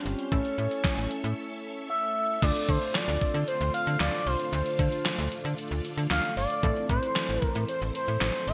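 Cool and driving, this short synth-pop excerpt moves at 114 BPM in a straight 4/4, set in D minor and cut from a longer piece. An expressive synth lead carries the melody up front, its smooth, dark sawtooth-and-triangle tone colored by chorus, delay and vibrato. Beneath it a funky polysynth comp adds punchy, filter-plucked chords with chorus, while a lush string machine ensemble sits in the background with sustained chords, a soft attack and a long release. From 0.1 seconds a snappy, metallic slap-like FM bass and a gated 80s digital drum machine join in, the drums giving a thumpy kick, gated reverb snare, handclaps, hi-hat and crash with a tape-tinged, sampler-style punch. The harmony moves from A to Dm7 at 2.4 seconds and on to Am at 6.6 seconds, all framed by a moderate plate reverb and a bright 1980s-style digital production.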